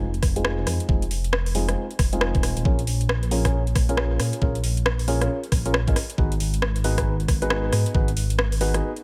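A skippy, bouncy two-step garage groove opens with dark, mellow grand piano stabs over a deep, rumbling detuned saw bass. The piano is treated with a low-pass filter, dub echo and a filter sweep that runs throughout, giving its short, vintage chords a smooth, shadowy character as they move from Fm7 to Bbm7 at 2.7 seconds and on to Abm7 at 6.2 seconds. Up front, the bass has a beating unison tone with tube saturation and a fast attack, sustaining beneath the harmony. The garage drum kit brings metallic hi-hats and rim clicks, overdriven and pushed forward, while a layered electronic kick adds a knocking, distorted thump until 8.1 seconds. The swung sixteenths keep the rhythm lively, and the whole short cut from a longer piece sits fairly dry and close.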